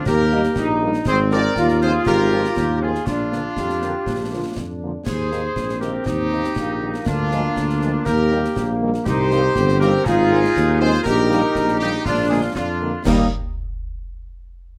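A moderate studio reverb gives this short cut from a longer military-style march for wind band a room-sized glow, while the percussion stays close and dry. The trumpet section carries the melody in a dark, classical voice, and the woodwind section adds a second line with light vibrato and a smooth top. Trombones hold soft-attacked sustained chords, and a tight, mellow French horn section sits in the background with accompaniment from 0.3 seconds. Up front, the tuba anchors the bass with a trace of vibrato, while concert snare drum, concert bass drum and clash cymbals with shadowy cymbal colour keep the straight two-beat march pulse. The mood is festive and proud, and the harmony returns to its opening chord at 13.1 seconds.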